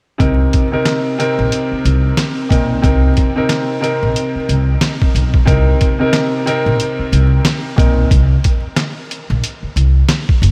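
A swung 4/4 groove at 91 BPM, with 16th notes pushed to a 60% swing, drives this dark, moody boom-bap hip-hop fragment cut from a longer piece, tuned slightly high to A4 = 443 Hz. The sampler-style trip hop kit sits up front with a compressed, pitched-down, gritty character, pairing a thumpy kick and medium-tuned snare with hi-hat and handclaps under a tape-coloured sheen. A pizzicato upright bass with steel strings sounds woody and growly, sitting low between F#1 and C2 and also placed up front. Over a Cm7 harmony, a warm grand piano plays accompaniment with long sustain and a present tone, filtered at both ends and shaded by cassette tape, until it drops out at 8.1 s while bass and drums carry on to 10.5 s. Vinyl crackle, light reverb and a small room ambience frame the recording intimately, and the arrangement moves into a new section at 5.5 s.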